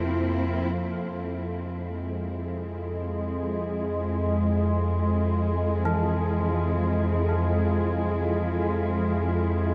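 A detuned, organ-like sine drone sits up front with ensemble chorus and a filter sweep, while a dark, woody cello section bowing lush sustained chords with vibrato fades in from 0.8 seconds, and a bright, ringing bronze metallophone enters in the background at 5.9 seconds with delayed arpeggios, all in a desolate, unsettling free-time ambient passage in F harmonic minor bathed in huge, wet reverb.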